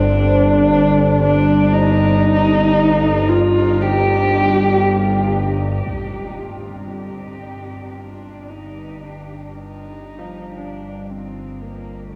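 A slow, straight 4/4 pulse at 58 BPM carries this unsettling, cavernous dark ambient drone, cut from a longer piece, where a husky, woody horsehead fiddle bows the melody up front with vibrato, portamento and diffuse ambient delay over an evolving, detuned sawtooth analog drone treated with chorus and phaser. A deep, moody pad holds Gsus2 in the background until 5.9 seconds, when a huge, bright impact marks the move to G5 and a fade-in on the fiddle begins, and a smooth, vintage grand piano adds delayed arpeggios from 10.2 seconds. A long cathedral reverb and worn, warbling cassette tape with pitch drift shroud the whole recording.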